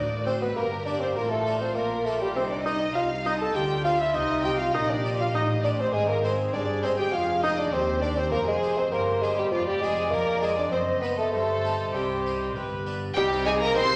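Baroque-style classical concerto movement in 3/4 at 100 BPM, driving and stormy, cut from a longer piece and settling into C minor from 5.9 s. A mellow bassoon with light vibrato carries the solo melody up front, though its tone sounds distant and roomy, while a focused violin section also carries the melody in the background and a clear, smooth studio violin section plays a second line. A close-miked harpsichord with a dry, brilliant, full plucked sound supplies accompaniment alongside an expressive viola section with a smooth top, which drops out at 13.8 s. A lush symphonic cello section and a close, bowed double bass section anchor the bass with vibrato. The harmony moves through diminished and minor chords, passing F#dim7 and Cm/G before resolving on G and then Cm at 13.2 s, all set in a wet recital hall reverb.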